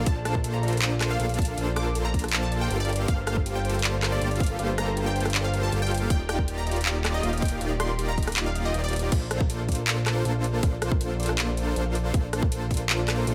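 Huge, detuned supersaw chords pump with sidechain through this euphoric, playful half-time future bass drop, riding a fat, saturated analog bass and an up-front, hard-clipped electronic kick alongside a trap kit of metallic hats, handclaps, rim clicks and crash cymbal, while a bright, phased unison pluck with digital delay carries the melody, a soft, dark, chorused pluck arpeggiates in the background, and very quiet bowed chamber strings float sustained chords until 9.1 seconds, when the harmony settles onto Bbmaj9 under light reverb.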